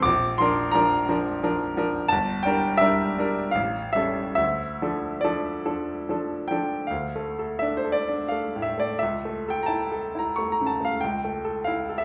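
A bright, polished grand piano carries this yearning, melancholic romantic nocturne alone, sitting up front with a short sustain across a range from G1 to D6. In D minor and 3/4, the rubato pulse drifts between 68 and 94 BPM, with harmonies moving from Bb through Em7b5/G and A7 to Dm, and the opening phrase returning at 6.9 s before touching A/C#. A large studio reverb places the listener further back in the room, and the music breaks off at 12.0 s as a fragment of a longer piece.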